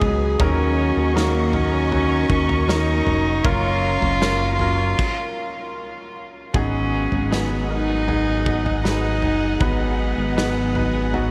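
A floating, pure-toned bowed cello carries the melody up front in this melancholic, emotional pop ballad, entering at 0.4 seconds over a glossy, chorused pulse-wave synth bass, a clear baby grand piano, lush and distant strings with vibrato, a very quiet, bright and twangy clean electric guitar playing arpeggios, and a loose indie drum kit with dark cymbals, while a mellow French horn section with delay supplies a second line until 4.9 seconds, and the band stops from 5.0 to 6.5 seconds before resuming, all soaked in a huge, dreamy ambient reverb.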